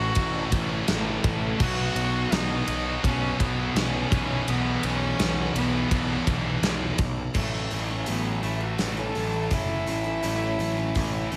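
Bittersweet and anthemic, this quiet-loud alternative rock excerpt moves at 84 BPM in a straight 4/4, cut from a longer piece. A bowed solo cello, biting and earthy yet distant, carries the melody with a light vibrato throughout, over a wall of picked riffs: a scooped high-gain guitar sitting in the background, joined until 7.0 seconds by a very quiet high-gain distorted guitar and a double-tracked, overdriven electric guitar. Up front, a growly fuzz bass, picked and overdriven, holds down the low end while a big acoustic drum kit enters at 0.2 seconds with a tight kick, a medium-tuned snare, hi-hat, ride and crash, its sound mid-forward with a rolled-off top. At 7.3 seconds the music drops into half time, the cello takes a solo, and a picked steel-string acoustic guitar with tape echo adds arpeggios from the background. The chords move from A6 through Bsus2 and E/B before returning to A6, all set in a light studio reverb.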